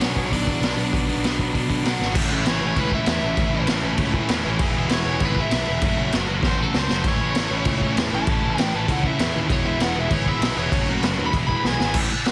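Punk rock in straight 4/4, upbeat and energetic, heard in a short cut from a longer piece. A raw garage drum kit sits up front with a gritty, saturated sound, a boomy kick, a medium-tuned snare and a rolled-off top, covering crash cymbal, hi-hat, kick and snare, with fills at 2.0 s, mid-phrase and near the close. A double-tracked, distorted electric guitar drives bright picked riffs up front, while a picked electric bass with fuzz and overdrive adds a growly low end. From 2.2 s, an overdriven lead guitar with a biting, picked tone takes a solo over chords that move from B minor into a cycle of A, E and F-sharp minor. The mix carries light reverb and a dense, heavily limited modern master.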